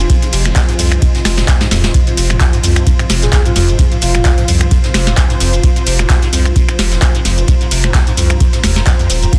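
A dense, heavily limited modern mix opens this hypnotic, trippy acid house excerpt at 130 BPM in F minor pentatonic, where an up-front, tape-warm electronic kick and a booming analog drum machine with metallic hats, finger snaps, handclaps, ride and shaker sit over very quiet jazz brushes, a deep saturated sub bass, a squelchy, resonant acid bass riff with phaser and chorus, dark bowed strings, and a warbling, nostalgic pad pumping beneath, while a drum fill lands at 1.6 seconds and a breathy, flute-like synth lead drifts in from 3.2 to 4.5 seconds with tape echo.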